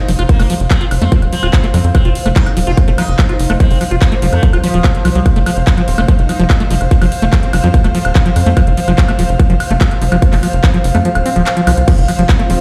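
Heard through a big sound system in a bare stone room, this hypnotic, intense psychedelic trance excerpt in F major at 145 BPM rides a punchy, up-front electronic kick (which drops out at 11.1 seconds) and a tight, nasal sequencer bass, with a big-room dance kit of metallic hats, handclaps, crash and woodblock, while a squelchy, resonant acid bass with chorus and delay pumps against a breathy pad and a pulsing, detuned gated texture in the background; a buzzing, shimmering plucked sitar with phaser and delay carries the melody until 5.2 seconds, and a very quiet, aggressive FM wobble bass slips in at 5.9 seconds.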